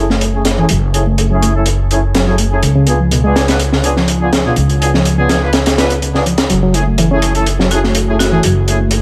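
Clear brass stabs with 12-bit sampler grit and a filter sweep open this funky, raw breakbeat excerpt in F# minor at 124 BPM alongside woody pizzicato upright bass, joined at once by a reedy electric piano riff with fast tremolo and a crunchy, saturated drum kit of hi-hat and high-tuned snare; a barely audible, detuned analog pad enters at 4.2 s, and a bright hard-mallet marimba note on F#4 sounds in the background at 7.7 s, as the chords move from F#m9 to C#7b9 and back amid vinyl crackle and light small-room reverb.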